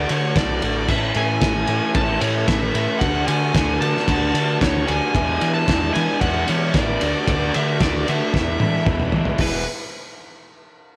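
A cloth-damped, thuddy drum kit sits up front in this jangly, upbeat indie rock excerpt, its fat snare, tight kick and dark, muffled cymbals carrying a gritty, lo-fi saturation, and a drum fill arrives at 8.3 seconds. Beneath it, a growling picked electric bass with overdrive adds a round, amped weight. A crunchy overdriven guitar plays a bright riff touched with slapback echo, while a raw garage guitar joins at 0.9 seconds with a very quiet picked riff of its own. Over the top, a compressed fuzz lead guitar carries the melody with distortion. A very quiet brassy analog pad holds sustained chords from a detuned sawtooth source, with chorus, vibrato and a soft, evolving filter swell, all set in a small room with light reverb as the passage moves through major-seventh and dominant chords before resolving to E at 9.4 seconds.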